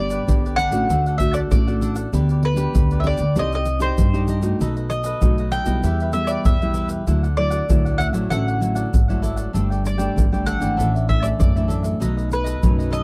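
Up front, a close, dry percussion section of tube shaker, pandeiro and a deep surdo, all played with hard hands, drives a festive, sunny samba-choro at 97 BPM in a straight 4/4, with a dark, thumpy pizzicato upright bass on gut strings just beneath it. A mellow, picked mandolin on double strings carries the melody in G major over a full-bodied, fingerpicked nylon-string guitar, while a crisp cavaquinho sits further back in the accompaniment. The chords move through G, D, Cmadd9, B7 and Em in a dry, close 1970s-style studio sound with light reverb, in a 13-second excerpt cut from a longer piece.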